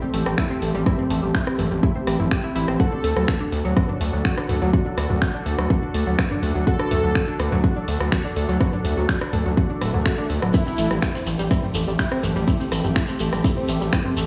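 Melodic techno at 124 BPM in 4/4, this excerpt carries a dark, driving mood over a harmony that moves from Am7 to D and back to Am7 at 10.5 seconds. A punchy, tape-warm electronic kick sits up front, joined by a house kit of finger snaps, hi-hat, ride cymbal, rim click and toms that was re-recorded in a large room. Underneath, a gritty, saturated synth bass with oscillator sync and resonant filter sweeps pumps to the sidechain. An evolving, warbling wavetable pad holds sustained chords with chorus and built-in reverb, while a tight, detuned sequenced synth plays filter-plucked arpeggios through chorus and digital delay. Short phrases from a smooth, detuned supersaw melody surface briefly around 2.8 and 6.7 seconds, a very quiet swell appears just before 10.5 seconds, and a grainy, compressed shekere joins from that point to the end.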